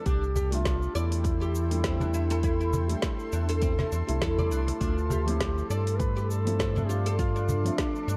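A distant, dark duduk carries the melody with vibrato and scooped notes over a felt-muted upright piano and a blurred, evolving granular cloud pad, while a bright, plectrum-plucked oud spins arpeggios and a round analog bass sits up front with tube saturation in this mystical organic downtempo excerpt at 101 BPM with a swung 16th feel. The rhythm layers a deep, tape-toned electronic kick, an overdriven afro-pop kit with woody snare, metallic hats and cabasa, and a cajon in the background. The harmony moves from C6 to Dm7 at 4.8 seconds, where a very quiet quartz singing bowl enters with a pure, ringing tone.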